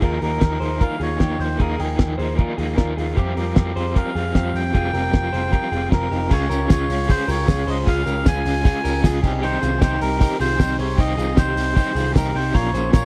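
A straight 4/4 groove from a cloth-damped, thuddy drum kit sits up front in this breezy, bright stretch of jangly indie pop, with its fat snare, tight kick and dark cymbals sounding rolled-off at the top. Beneath it, a vintage foam-muted picked bass gives a round, punchy low end, while a crunchy overdriven guitar supplies accompaniment through a tremolo effect. A second electric guitar, played through a small old amp, runs lo-fi, slightly broken-up arpeggios with a warbly pitch drift. Over the top, a reedy, nasal melodica carries the melody in a breathy plastic-case voice. At 6.3 seconds the music moves into a new section as a very quiet phased string machine adds swirling sawtooth chords with ensemble chorus and a long release, and a jingly tambourine joins in the background. The dry, close 1970s-style recording has little reverb, and the clip is cut from a longer piece.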